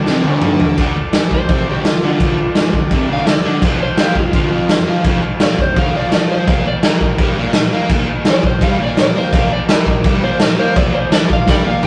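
Garage rock at 168 BPM in D minor, this swaggering, gritty excerpt opens with a drum fill from the punchy, saturated kit with dark cymbals before an electric slide guitar takes a dark, slightly broken-up solo from 1.3 seconds over a double-tracked fuzz guitar riff and a buzzy, vibrato-tinged combo organ holding sustained chords in the background, moving from Dm to F5 to Bb5 in a rough rehearsal-room sound with tube saturation and moderate reverb.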